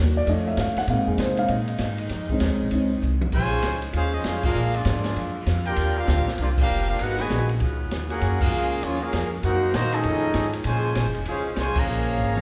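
Swinging and brassy, this big band swing excerpt in Bb minor moves at 196 BPM, opening with a dark, mellow upright piano solo over a woody pizzicato upright bass, distant sustained saxophone chords, and an acoustic drum kit with dark cymbals, a high-tuned snare and a boomy kick. A drum fill at 3.0 seconds ushers in a bright trumpet section carrying the melody with light vibrato and a soft attack, while the trombone section plays a second line beneath it. Band accents punctuate the passage through a chord sequence ending back on Bbm11, all set in the reverberant space of a recital hall.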